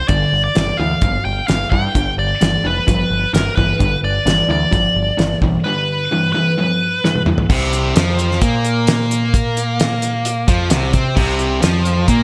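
A biting, overdriven lead guitar with digital delay carries the melody up front in this brooding, driving classic rock piece at 130 BPM, over a bright distorted guitar riff, a second overdriven riff tucked in the background, a growling picked bass and a damped, dry 70s acoustic drum kit with a fat snare, tight kick and dark cymbals, until the lead ends at 7.2 seconds, midway through a drum fill that starts at 7.0 seconds and opens a chordless passage in which the background guitar drops out at 7.5 seconds and returns at 11.2 seconds, all set in a lightly reverberant room.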